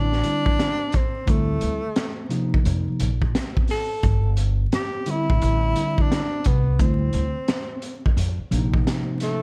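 Dark, smoky production with vinyl crackle and small-room ambience frames this mellow jazz-hop fragment at 87 BPM, where swung sixteenths give a lazy hip hop sway to chords moving from Am7 through Dm9, F5 and Gsus2. A crunchy, saturated breakbeat kit with a punchy kick, a high-tuned snare and a rolled-off top sits close beside a woody, growly pizzicato upright bass, while a clean tine electric piano, bathed in lush chorus, fills in the harmony. Out in front, a breathy tenor saxophone carries the melody in a jazz style, with vibrato, soft attacks and scooped notes.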